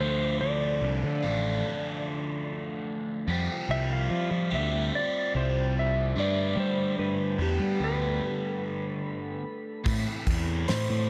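A dreamy mix soaked in a huge, ambient reverb gives this short psychedelic rock excerpt a mysterious, dark atmosphere. A clean, compressed lap steel guitar carries the melody with slide and volume swells, its dark tone trailing into tape echo. Beneath it, a crunchy, double-tracked overdriven guitar plays an up-front riff through a phaser, while a fuzz-laden picked electric bass growls with overdrive. A soft, flute-like tonewheel organ holds mellow sustained chords in the background, turning through a slow rotary speaker. The harmony moves from Dm to Fsus2 and Gadd9, landing on Amadd9 at 9.9 s, just as a damped 70s drum kit with a fat snare and tight kick comes in briefly.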